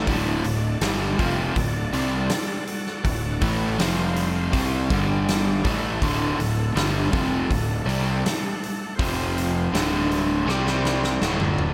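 An overdriven semi-hollow guitar sits up front, its double-tracked, picked riff carrying a warm hollow-body tone and a slapback echo through this swaggering, gritty slice of blues rock and southern rock at 81 BPM in a straight 4/4. Beneath it, a fuzz-drenched fingered electric bass adds a bright, growly low end, while a big acoustic rock kit drives the groove with a punchy kick, a medium-tuned snare, hi-hat and toms that ring out naturally in a large room. Further back, an overdriven tonewheel organ holds thick sustained chords through a slow rotary speaker. The harmony centres on D, moving through F5, C5 and G5 before settling back. At 10.5 seconds the drums break into a fill that carries to the end of the cut, and a lush hall reverb gives the whole power-trio sound a big arena scale.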